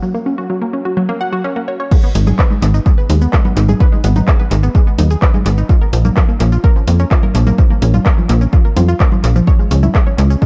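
A straight 4/4 pulse at 127 BPM drives this melancholic, hypnotic melodic techno cut in G# minor, where a lush, detuned unison pluck arpeggio with sidechain pumping and analog delay opens under a filter sweep in a short build-up before the drop at 1.9 s brings in an up-front, punchy electronic kick and a house kit of congas, crash cymbal, handclaps, shaker and bright, high-passed hi-hats, joined at 2.2 s by a tight, driving sawtooth-and-square sequencer bass with ring modulation, in an echo-heavy digital space.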